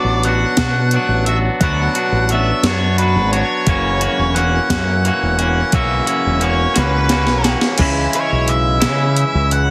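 Set in a slow 6/8 with a straight feel, this short indie rock excerpt carries a moody, bittersweet air over chords moving from Bm7 to F#7sus4 and then C#m7. A gated 80s digital drum machine enters at 0.2 seconds, up front with a thumpy kick, gated reverb on the snare, crash cymbal and hi-hat, and a tape-warm, sampler-style character, and a drum fill leads into a new section at 7.8 seconds. Underneath, a growling fingered electric bass sits prominently with an overdriven, punchy tone, while a bright, compressed, overdriven electric guitar plays a picked riff close to the listener. Above them, an octave-fuzz lead guitar carries the melody with a distorted, fuzzy edge. At 7.8 seconds a raw garage guitar joins in the background with its own picked, overdriven riff coloured by lush chorus. The sound is dry and heavily compressed, giving the whole excerpt a dense, radio-ready punch.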